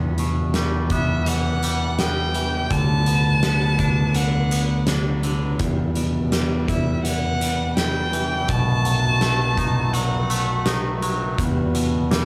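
Heard through light reverb and a small room's ambience, this brooding, cathartic post-rock passage is cut from a longer piece and moves at an unhurried, straight pace. A growling picked electric bass sits up front with bright, overdriven grit, joined from 0.2 seconds by an oversized low-tuned drum kit whose boomy kick, fat snare and hi-hat pump through a big, saturated room. A twangy electric guitar spins clean, compressed arpeggios colored by phaser and slapback echo, while a reedy hand-pumped harmonium breathes sustained chords in the background from a boxy space. Carrying the melody from 0.9 to 10.7 seconds, a single rich violin sings high and up front, bowed with soft attack, vibrato and portamento, its line also touched by slapback echo. Beneath it the harmony circles through Emadd9, Bm/D and B7, lending the passage its aching, unresolved pull.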